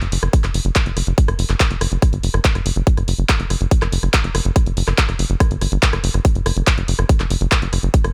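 Psychedelic trance in a straight four, this short excerpt from a longer piece feels driving and intense. A tight sequencer bass runs from the opening moment, low and dark, built from sawtooth, square and triangle tones with a fast-attack filter pluck that decays, its edge thickened by tube saturation. A layered, produced big-room dance drum kit plays alongside it from the start with handclaps, hi-hat and rim click. An electronic kick drum joins at 0.3 seconds, punchy and sitting up front in the mix. The parts sit in a digital ambience.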